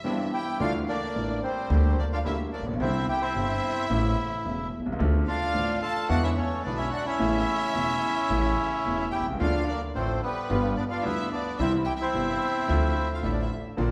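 A hall-like reverberant space with a long, churchy decay surrounds this sultry, dramatic tango fragment in D minor, moving at 109 BPM in 4/4 with a rubato feel. An up-front bandoneon carries the melody from 0.3 seconds, its tone reedy, vintage and band-limited. A second, very quiet bandoneon, dark, dry and close-miked yet full, adds stabs at the opening and again from 9.4 seconds. Beneath them, an up-front concert grand piano with a deep bass and natural tone plays the accompaniment, and a woody pizzicato upright bass on steel strings joins at 0.6 seconds. A distant, lush violin section plays a bowed second line with expressive vibrato, while the harmony passes through Dmadd9, Gm/D, A, E7 and G7 before settling back on Dm.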